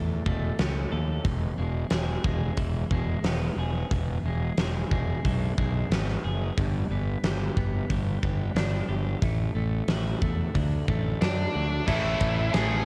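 A straight 4/4 pulse at 90 BPM drives this restless, anthemic quiet-loud alternative rock excerpt in E mixolydian, where a bright, twangy twelve-string electric guitar picks cassette-tinged arpeggios over a growly, overdriven fingered bass and a big, punchy rock kit with a fat snare, moving through A, E, G and D before a dark, smooth overdriven lead enters at 11.2 seconds and a thick fuzz guitar riff kicks in at 11.9 seconds, all in a dry home cassette recording.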